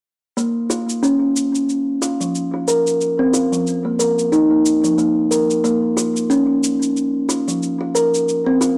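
A relaxed 4/4 pulse at 91 BPM carries a gentle swing on the sixteenths, setting an organic downtempo groove that feels hypnotic and meditative. From 0.4 s to 8.8 s, a kalimba plays arpeggios between F3 and Bb4, its woody, hollow-box tone and fingertip pluck sitting up front, mellow and ringing, with a vintage, band-limited quality shaped by a low-pass filter and analog delay. Beside it, a cabasa supplies the percussion over the same span, sampler-style and compressed, roughened by overdrive and set back in studio reverb. A moderate scoring-stage reverb and small-room ambience frame the pair, while the overall sound stays dry and gritty, like a hardware recording. Tuned to A4 = 439 Hz, this brief passage is cut from a longer piece.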